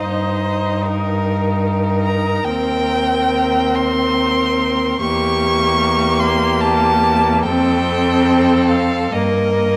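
A focused first violin sings the melody up front in this serene, tender slow romantic movement for string quartet, its single bowed line rich with vibrato and reaching as high as C#6. The pulse sits at 73 BPM in 3/4, with uneven beats and a gently elastic rubato. Beneath it, a warm, smooth second violin plays a close, even second line, while a viola sounds more distant as it carries the accompaniment. A full-bodied cello holds the bass close and up front, bowed with vibrato. The harmony moves from Eb/G through Cm7/Eb, Edim7 and F before settling back on Eb/G at 9.1 seconds, all within a dark production and a moderate scoring-stage reverb in this brief excerpt from a longer piece.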